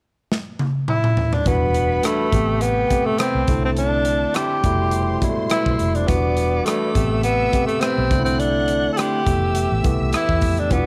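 Lush 1970s-style soul at 104 BPM in 4/4, with a light sixteenth-note swing and a silky, bittersweet mood, cut from a longer piece. A modern studio drum kit opens with a fill at 0.3 seconds, its tight kick and medium-tuned snare sitting up front alongside hi-hat, rim click and toms in a small room. A breathy tenor saxophone carries the melody from 0.9 seconds, whispered and intimate with vibrato, scooped notes and a soft attack, and from 1.4 seconds a barky tine electric piano, lightly overdriven through a combo amp, takes up the accompaniment. From 1.5 seconds a dark, round, foam-muted fingered electric bass with transformer saturation anchors a cycle of Em9, Am9, C69 and Fmaj9#11 chords, and a woody, bowed string section with slapback echo hovers softly in the background. A very quiet, slightly broken-up electric guitar picks a riff through a small old amp, and light reverb gives the whole a close, small-room feel.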